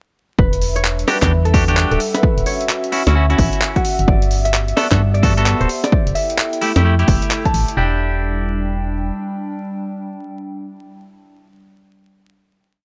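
UK garage in a two-step style at 130 BPM, moody and skippy in E dorian, built on a punchy overdriven kick, a pitched-up, gritty breakbeat kit of swung hats, snare and handclaps, and a dark, hollow FM bass with an organ-like tone sitting up front. A mellow fingerpicked harp repeats a ringing riff through tape echo alongside bright, twangy clean guitar stabs, while a smooth detuned sawtooth pad holding a high note and a warbling, nostalgic lo-fi pad both pulse with sidechain pumping. The groove runs until 7.8 s, when the drums stop and harp, guitar and the tape-like pad settle onto a final Em7, with the bass lingering to 9.1 s in a dry mix dusted with vinyl crackle.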